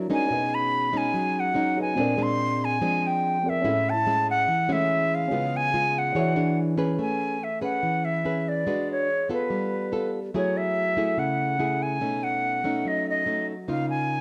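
Fingerpicked classical nylon-string guitar and a dark, mellow grand piano with short sustain open this sunny, romantic bossa nova fragment at 144 BPM in a straight 4/4, joined almost at once by an airy, reedy silver concert flute playing a tongued, straight-tone melody up front beside the guitar, while the piano stays in the background until it stops at 7.0 s as the music settles into A major over lush extended chords in a moderate large-studio reverb.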